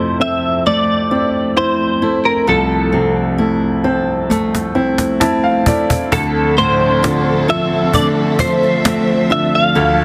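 Tender and emotional, this pop ballad excerpt opens with a bright, compressed clean electric guitar carrying the melody through an ensemble chorus. It sits over a clear, slightly worn grand piano and full-bodied fingerpicked steel-string acoustic guitar arpeggios on Fmaj7. A snappy, dry cajon enters with a fill at 4.3 s, the piano adds its own fill, and at 6.1 s a lush symphonic string section joins on Dm7 with expressive vibrato and portamento, all set in a moderate plate reverb and a dense, heavily limited modern master.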